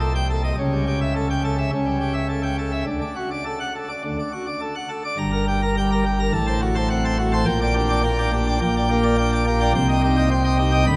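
Classical organ toccata, stormy and majestic, in which a solo pipe organ on full plenum with brilliant mixtures, baroque voicing and audible chiff sits up front, its range spanning D1 to B5, while a cathedral reverb with a 6.5-second decay and a layer of vinyl crackle surround this short excerpt as its harmony settles onto G minor at 5.2 seconds.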